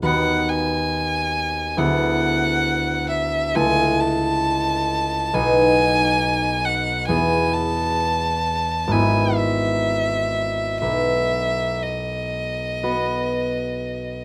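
In a flexible, rubato 4/4 that drifts between 60 and 70 BPM, this romantic classical duo for violin and harp unfolds in E major with a warm, serene mood. A single bowed violin carries the melody from start to finish, its tone clear and intense with a close, up-front presence and expressive vibrato, singing between D#5 and A5. Beneath it, a concert harp supplies fingerpicked accompaniment across a deep span from G#1 to B4, its bright, ringing acoustic strings also placed up front. The harmony moves gently from B/D# through E7/D, A/C# and B before settling on E, then passes through E/G# to close on B at 10.8 seconds. A light reverb softens the space around the two players in this 14.2-second excerpt cut from a longer piece.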